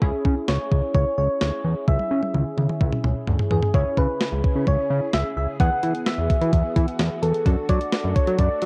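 Driving and nocturnal, this synth-pop excerpt pairs a round, gentle FM lead with chorus and vibrato over a punchy, warbling polysynth comp and a fat, saturated analog bass with a filter sweep, all pushed by a thumpy 12-bit digital drum machine that plays a fill at 1.9 s, while a silky string machine with phaser enters in the background at 3.7 s, its cassette-tape haze shared by the lead, comp and drums in a lightly reverberant home recording over C#m, Eadd9 and D/F#.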